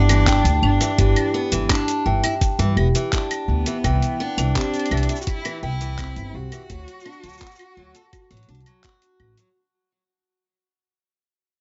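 This short folktronica passage, cut from a longer piece, has a warm, pastoral mood at a steady, straight 84 BPM in 4/4 and G major, moving through G5, C and D chords. A distant, expressive bowed cello carries the melody with vibrato and portamento through a delay until 8.8 seconds, while a bell-like, sweet celesta with felt hammers rings out a second line above it, also with delay. Picked steel-string acoustic guitar arpeggios sound boxy and carry a vintage 12-bit sampler grit along with their own delay. Up front, a woody, dark pizzicato upright bass with gut strings is the loudest part and thumps out the low end. A compressed, pitched-down, muffled drum kit of cabasa, claves, handclaps and hi-hat enters at 0.1 seconds and is joined by a thumpy electronic kick from 0.3 seconds, both washed in studio reverb. The mix has light reverb and a soft, dulled top end, and the whole passage fades out over its 9.6 seconds.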